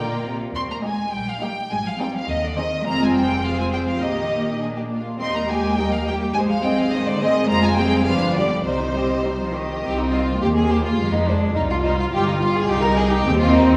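In a straight 2/4, this quick, stormy and restless classical-period movement for string orchestra sets a focused violin melody with a smooth top above a lush, up-front second violin line, a close, even viola accompaniment, an intense cello bass and a warm, distant double bass, all bowed with vibrato and bathed in a wet concert hall reverb.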